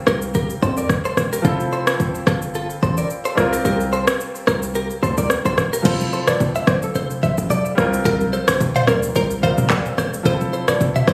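An up-front electronic afro-pop drum kit of deep kick, handclaps, rim click, shaker, toms and crash drives this joyful, romantic afrobeats piece, its kick muted from 3.6 to 5.9 seconds, over a punchy 808-style bass, a clear grand piano and a bright, clean electric guitar riff with tremolo and delay, before dry background congas and a hollow, bouncy square pluck melody with chorus and delay join at about 5.8 seconds, the mix sitting in light reverb as if captured on a phone in the room.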